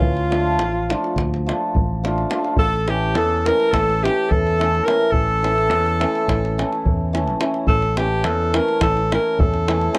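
The excerpt opens with all five parts at once: a breathy alto saxophone carries the melody over a hammered dulcimer, fingered electric bass and davul, with a bright clarinet tracing a second line in the background. This is restless, fiery Balkan wedding-band folk in 9/8 at 212 BPM counted in eighths, straight in feel and set in A phrygian dominant, moving from Dm to A at 2.6 seconds. The saxophone sits up front in a whispered, intimate subtone with a soft attack and light vibrato, phrased in a jazz style, while the clarinet's classical-style line drops out at 7.1 seconds. Beneath them the dulcimer rings and shimmers, the bass is growly and punchy, and the davul sounds deep with a small-room sound. The recording is dry and close in a 1970s studio manner, with light reverb and a faint mains hum, and it is cut from a longer piece.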